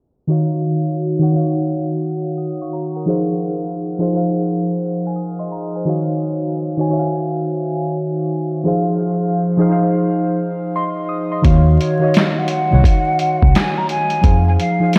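Muted, felt-like synth keys sit up front in this hazy, reflective lo-fi hip hop excerpt at 86 BPM in Eb dorian, their soft, dark tone run through chorus, cassette tape and a filter sweep as they alternate Ebm7 and Fm7 alone until 11.4 seconds. Then a compressed, pitched-down sampler kit with a thumpy kick, handclaps and 12-bit grit arrives with a swung feel, joined by a round, foam-muted electric bass and, at 11.8 seconds, a distant, hollow jazz flute with breathy vibrato. The whole dreamy mix is soaked in lush hall reverb and vinyl crackle.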